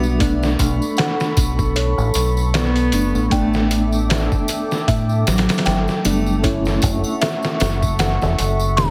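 A dark, woody bowed cello carries the melody through dub echo in this smoky, dark trip hop fragment, over a round, up-front fingered electric bass, gritty pitched-down sampler drums with a thumpy kick that enter at 0.2 s, a reedy tremolo electric piano with tape echo, a warbling, nostalgic detuned pad, a delicate tinkling music box in the background, and bright, saturated tambourine and triangle, all pressed into a heavily compressed radio-like sound with a tape stop.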